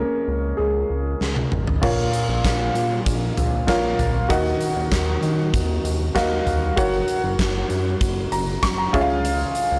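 A dark, up-front baby grand piano opens this dramatic, earnest piano-driven pop excerpt in Bb minor at 97 BPM, moving through Db, Bbm, Ebm and Gb over a glossy, chorused synth bass with retro pulse-wave and sawtooth tones and tube saturation. A huge arena drum kit enters at 1.2 seconds with a fill, bringing a punchy kick, fat snare, bright cymbals, handclaps and toms in a pumping hall sound. A very quiet, jingly tambourine joins at 2.0 seconds, all within a blown-out, overdriven recording touched with light small-room reverb.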